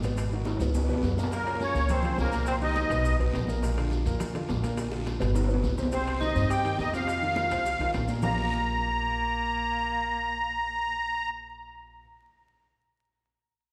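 A straight 4/4 groove at 209 BPM drives this sunny, sophisticated Afro-Cuban jazz in Bb major: bright, damped high congas, round low bongos, ringing metal-shell timbales, raspy guiro and grainy maracas percolate until 8.3 seconds beneath a woody pizzicato upright bass up front and an intimate vintage grand piano with audible action noise, while a shimmering, reedy musette accordion carries the melody from 1.3 seconds, joined by a mellow subtone tenor saxophone with vibrato and scooped notes, heard in a reverberant hall with vinyl crackle.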